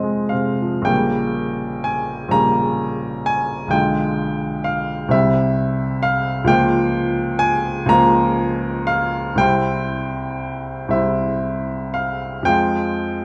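A clear, natural baby grand piano sits up front in a wet, large studio reverb, its long sustain ringing through a brief passage cut from a longer romantic nocturne. Played alone in a slow, rubato 12/8 at 34-44 BPM, tuned to A4 = 442 Hz, the piano ranges from Bb1 to Bb5 with a wistful, mournful air. The harmony moves from F minor through diminished chords to C, touches Bb minor over Db, returns to C, and settles back on F minor at 12.5 seconds.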